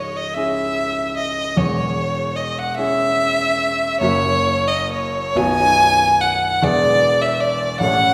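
Romantic classical duo in C# minor, solemn and elegiac, moving in a slow, rubato 6/8 at roughly 43-51 BPM by the dotted quarter, in which a single bowed violin sings a rich, smooth, evenly sustained melody with vibrato, set close and up front, over the polished, clear accompaniment of a baby grand piano ranging deep into the bass, as the harmony passes from C#m through F#7 and B to E7, all bathed in the lush reverb of a recital hall heard from further back in the room, in a passage of about 8.1 seconds drawn from a longer piece.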